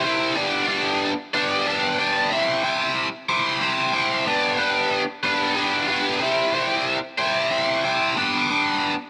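Light reverb and a digital ambience surround this trippy, hypnotic rock fragment in C major at 62 BPM in a straight 6/8, where a cranked stack electric guitar, bright, overdriven, picked, double-tracked and up front with a flanger sheen, plays solo from 0.0 to 8.9 s, alternating between G/B and C chords.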